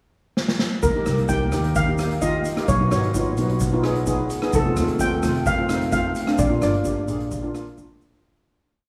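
Calypso at 130 BPM in Eb major, short, bouncy and festive, set in a vast, echoing space with a long cathedral reverb. A street-band drum kit opens with a fill at 0.4 seconds, its boomy kick, medium-tuned snare, rim click and hi-hat settling into an airy, polished calypso groove. From 0.8 seconds a lead steel pan, metallic and up front, plays hook phrases with hard rubber sticks, and at 0.9 seconds a second pan on soft rubber sticks joins beneath it with mellow, shimmering triad chords. A woody upright bass with gut strings plucks a thumpy, syncopated figure, and a grainy egg shaker keeps a bright pattern low in the mix. The chords move from Eb through Badd9 and F7 to Bb, and the piece fades out from 6.4 seconds to its end at 8.2.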